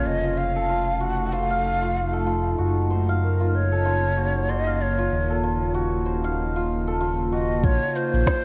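Organic downtempo with a meditative mood and a lightly swung sixteenth-note feel, this passage is cut from a longer piece. A breathy, end-blown ney carries the melody up front, its reedy tone colored by vibrato and tongued, expressive phrasing and trailed by delay. Beneath it, a santur ripples through bright, shimmering arpeggios, also with delay, while a tense, detuned, string-like drone sustains chords that breathe with sidechain pumping. A smooth, mellow synth bass anchors the low end with a pumping pulse as the harmony moves from F7b9 through Gb6 and Ebm7 to Bbmadd9. A soft electronic kick and a woody snare with shaker arrive only at 7.6 seconds. The whole track sits in a moderate scoring-stage reverb and carries the warbling pitch drift of worn cassette tape, giving it a hazy, aged glow.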